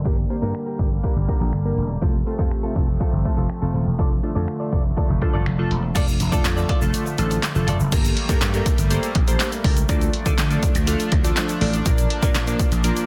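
Bittersweet yet confident, this dance-pop excerpt moves at 122 BPM in G minor, with a punchy analog drum machine up front driving kick, snare, hi-hat, handclaps, finger snaps and crash, its snare softly clipped, under a growly, amped vintage slap bass that pumps with the sidechain. Glassy digital keys with a filter sweep and chorus, a shimmering pulse-width pad of sustained chords, and a clean, direct-recorded electric guitar riff in lush chorus fill the middle. A grainy tube shaker enters at 6.0 s and sits in the background, and the guitar drops out shortly after, at 7.8 s. The dry, dense and heavily limited master is darkened by a low-pass filter, and the harmony shifts to a Gmadd9 at 7.9 s.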